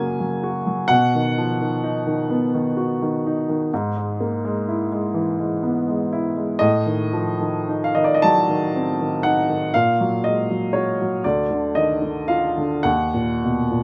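In a slow, rubato 12/8 at roughly 35-43 BPM counted in dotted quarters, this fragment of a romantic classical nocturne unfolds as a mournful, wistful solo for upright piano, ranging from D2 to Bb5. The woody, polished instrument sits up front with long sustain, captured by close, detailed microphones and light reverb. Its harmony drifts through shadowed chords such as Adim7 and Gbmaj13/Bb before settling toward Ebm at 12.8 seconds.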